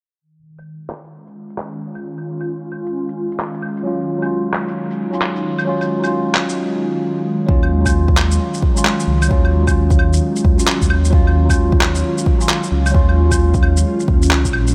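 A swung 132 BPM future garage groove of muffled, overdriven shaker, claves and handclaps opens this nocturnal, ghostly Eb minor piece alongside an ethereal pad with chorus, phaser and sidechain pumping that holds an Ebm7 chord under a filter sweep; a clean tine electric piano through a combo amp with delay joins at 3.8 s, and after a brief break a deep, tape-toned kick re-recorded in a large room and a rumbling, detuned sawtooth bass arrive at 7.5 s, the whole track sitting in light digital ambience.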